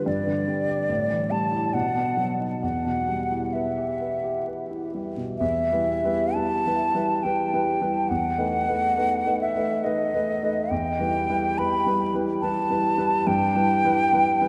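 Lyrical and serene, this romantic classical duo in E minor drifts in a rubato 3/4 at 62-73 BPM. An airy, hollow concert flute sings the melody up front with vibrato and a crisp attack, over the intimate, deep-bassed accompaniment of a warm concert grand piano whose action noise is audible. Both sit in a vast cathedral reverb with vinyl crackle, and the opening phrase gives way to a new section at 5.4 s.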